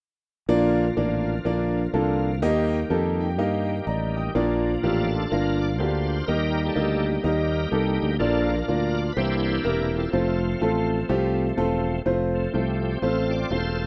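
A clear, intimate concert grand piano, a bright tonewheel organ and a round, punchy fingered electric bass all start together at 0.5 seconds in this jubilant, soulful uptempo gospel cut at 124 BPM in Bb major, with a swung eighth-note feel moving through Bb, Eb, C7 and F. The piano sits up front with audible action noise, deep bass and long sustain, and it plays a fill from 2.9 seconds. At 4.4 seconds the organ, shouting and lightly overdriven through a slow rotary speaker with chorus vibrato, takes a solo over the piano and bass, all in a small room with light reverb and the rough sound of a home demo.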